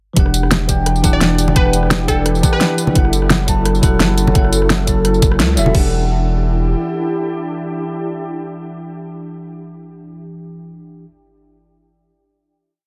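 Rolling, lightly swung two-step drums from an overdriven electronic kick and a pop kit with fat snare, rim, hats, tambourine and crash drive this dreamy, lush liquid drum and bass piece, with quiet, dry congas, a thick, saturated sub bass of long gliding notes, bell-like tine electric piano chords with phaser and tape echo, a glassy, ethereal FM pad pumping under ensemble chorus, and a crystalline, detuned wavetable pluck playing short phrases through dub echo. The drums stop near 5.8 seconds, the bass follows by 6.8 seconds, and the piano rings on through a final Em9 chord.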